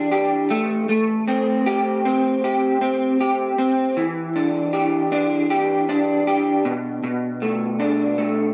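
Indie pop at 78 BPM in E minor, this mellow, wistful excerpt features a lone fingered electric guitar through a small old amp, its slightly broken-up, lo-fi, compressed tone sitting up front with ensemble chorus and vibrato, moving through Em7, Am7 and Bm7 chords in moderate studio reverb across 8.5 seconds.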